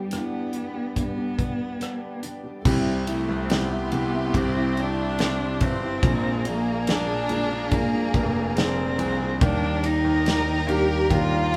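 Heartfelt and tender, this slow 71 BPM pop ballad excerpt sets a rich, bowed cello melody with vibrato up front over a punchy, bright-cymballed acoustic drum kit, a dark felt-muted upright piano, fingerpicked steel-string guitar arpeggios and soft sul tasto string-section chords, with an expressive violin section joining at 2.6 seconds and a clear grand piano bass at 2.7 seconds as the chords move from G through C and Bb7 to Ebmaj7 in a live-room setting with moderate reverb.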